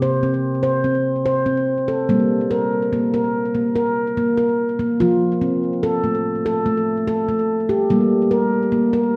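Hypnotic and gentle, this meditative world piece for tuned percussion moves at 145 BPM counted in eighths, in a straight 7/8 metre centered on G minor, with the tuning set slightly high at A4 = 444 Hz. A solo handpan carries the whole excerpt, sitting up front and spanning C3 to C5, its stainless steel notes ringing and mellow under soft fingertips. Delay trails the handpan's tones, and a wet recital hall reverb with a 1.4 second decay surrounds it, along with a small room ambience. The passage opens on a high C5, then settles onto G minor at 2.1 seconds, moves to F at 5.0 seconds, and returns to G minor at 7.9 seconds. Cut from a longer piece, the 9.2 second fragment holds a calm, trance-like focus throughout.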